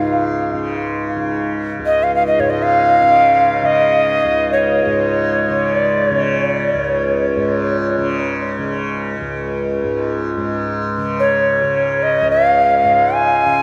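An up-front, close-miked cedar flute in the Native American style leads, its airy, woody tone carrying a gentle vibrato and soft attacks, with tape echo trailing its phrases in the upper register. Beneath it, a tanpura holds a low drone, buzzing and shimmering, its softly plucked strings giving the bed a warm acoustic glow. For the first 4.3 seconds a bronze singing bowl, struck with a felt mallet, rings dark and mellow in the background, its metallic tone slowly beating before it drops out. The music floats in free time, steeped in a huge, wet reverb that suggests a vast, echoing space. Peaceful and calm, this world meditation fragment is cut from a longer piece, and its opening material returns around 10.4 seconds.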